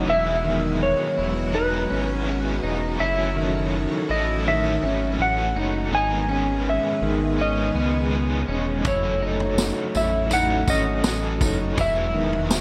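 A clean lap steel guitar carries the slide melody through analog delay in this ethereal, haunting dream pop excerpt at 82 BPM in F# dorian, over an overdriven electric guitar shimmering with tremolo and lush chorus, fingered arpeggios from a twangy guitar at the edge of break-up, sustained chords from a bright vintage string machine, and a round, deep analog bass, with a punchy vintage drum kit with tambourine and toms joining at 8.8 seconds, all set in an echo-heavy mix with spring reverb as the chords move from Eadd9 through F#m7 and G#m.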